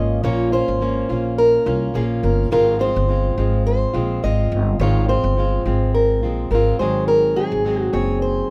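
A rough home demo mix with light reverb captures this short cut from a longer acoustic pop piece, set in 4/4 with a gentle swing on the sixteenths. The mood is reflective and wistful. A fingerpicked archtop guitar with fresh strings carries the melody in the upper register, sitting up front beside a full-bodied, plugged-in jumbo steel-string guitar that fingerpicks the accompaniment beneath it. An upright bass on steel strings, played pizzicato with a woody tone, anchors the low end and is also placed close in the mix. The harmony moves from Bbm to Fm7 at 2.5 s and then to Ab7 at 6.8 s.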